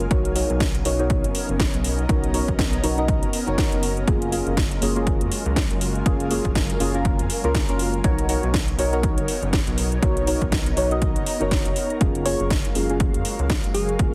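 A punchy, overdriven electronic kick drives this sunny deep house excerpt at 121 BPM with a 16th-note swing, alongside a house kit of cracking snare and metallic hi-hats and a rubbery, bouncy square-wave bass, with the bass pumping against the sidechain. Deep, mellow chord stabs colored by chorus, phaser and tape echo alternate between Bmaj9 and F#maj9, while a breathy pad and an ethereal, full-bodied pad with its own reverb sit in the background and pump gently. At 12.3 seconds a round, keys-like synth lead with chorus and tape echo briefly appears, all set in light reverb with a heavily compressed, radio-like finish.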